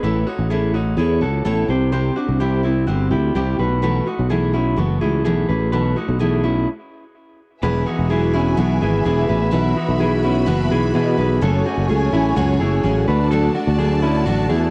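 The opening sounds together: a full-bodied jumbo steel-string acoustic guitar picking chords, a slightly broken-up, lo-fi electric guitar from a small old amp playing arpeggios up front, and a growly, punchy fretless bass sustaining its low notes beneath them with an ensemble chorus. This bright, youthful indie pop fragment moves in a straight four, its first passage turning through Aadd9, C and B7sus4. A brief stop from 6.7 to 7.6 seconds clears the air before the second passage arrives. There a studio string section enters at 7.6 seconds, bowing sustained chords sul tasto with vibrato and a smooth, intimate top. The chords shift to Eadd9, Bsus4, F#madd9 and D as the piece is cut off. The sound is dry, with the homespun character of a cassette home recording.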